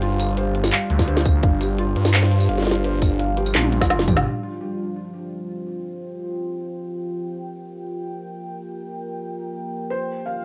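Dark and cinematic, this 170 BPM half-time drum and bass excerpt opens on a drop over Gm where a swirling, detuned saw bass, a woody-snared drum kit and an overdriven kick joining at 1.0 seconds drive beneath a deep, warbling pumping pad and soft felt-muted piano arpeggios, before a drum fill leads at 4.3 seconds into a section of the pad alone moving from F5 toward G5, where the piano returns briefly at 9.9 seconds, all carrying the character of a home cassette recording.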